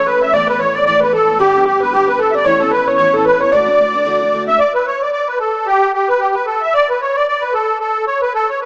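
A reedy, shimmering musette accordion leads this lively, bright Celtic reel alongside a barky, clean electric piano in the background, a full-bodied picked steel-string acoustic guitar and a faint woody pizzicato upright bass, until the accordion carries on alone from 4.6 s through a lush hall reverb and a rough, small-speaker demo mix.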